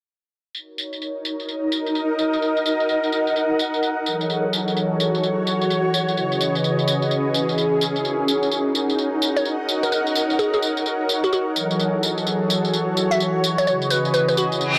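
A detuned sawtooth analog pad with chorus opens this bouncy, moody two-step UK garage excerpt, a filter sweep running through its sustained Ebm7, Gbm7 and Dbm7 chords, while a layered electronic tambourine, darkened by a low-pass filter, carries the swung groove. An ethereal, wave-folded pad with ensemble chorus drifts in at 1.0 seconds, and a crystalline wavetable pluck takes up the melody at 9.4 seconds through tape echo. A reverse cymbal arrives at 14.7 seconds, all under a moderate plate reverb.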